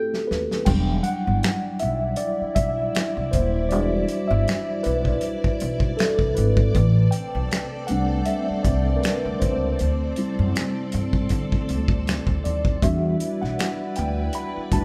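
A mellow tine electric piano leads this late-night, soulful neo-soul and R&B groove at 79 BPM in E minor, taking a clean solo through its built-in speakers from 0.7 seconds onward after a short opening drum fill. The warm soul drum kit sits up front with a punchy kick, medium-tuned snare, dark cymbals, hi-hat, crash and finger snaps, its roomy, distant character coming from a tight booth, and the 16th notes carry a light swing. A pizzicato upright bass with steel strings adds a woody low end from 0.3 seconds, while a lush vintage string machine ensemble enters at 1.1 seconds, holding sustained, slow-attack chords with a sawtooth edge, sub octave and ensemble chorus beneath the other parts. The harmony moves from Em7 to Am11 and D7sus4 before settling back on Em7, and the band sounds as if playing live together in one large studio with moderate reverb. Cut from a longer piece, the passage keeps a soulful, after-hours feel.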